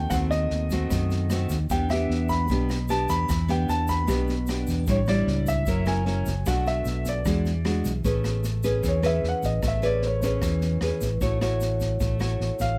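Bossa nova with a romantic, sophisticated mood, this short fragment of a longer piece moves in a straight four. A fingerpicked nylon-string guitar with a classical tone sits up front, its finger squeaks audible as it carries the harmony through a turning progression from a rootless B7b9/D# and Em7 toward F#7, Bm7 and E9. A dark, round, amped electric bass played with the fingers also stands forward, while an acoustic jazz kit in a small room adds a high-tuned snare, rim clicks and a boomy kick, with a grainy, bright egg shaker tucked in the background. A grand piano with a warm, natural sound carries the melody in its upper-middle register, and at 8.0 s it takes a solo as the harmony settles onto Amaj9 and then A6. The recording is close and detailed, with little reverb, so each instrument comes through intimately.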